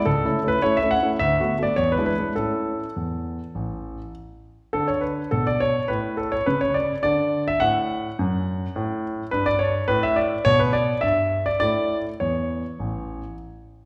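An intimate concert grand piano, its action noise audible and its bass deep, plays a cheerful, graceful classical-period sonatina alone at 104 BPM in a straight 4/4, starting in A major, moving into D major at 4.7 s and stopping at 13.3 s, all heard up front within the lingering reverb of a recital hall.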